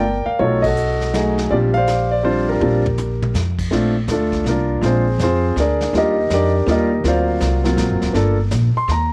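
A clear, intimate grand piano with audible action noise leads this relaxed, playful jazz piano trio excerpt in Bb major, swinging in 3/4 at 163 BPM over woody pizzicato upright bass and a vintage brush kit with dark cymbals, with a band accent at 0.6 seconds, a drum fill from 2.6 seconds and a piano solo from 3.7 seconds, all in a small room with light reverb.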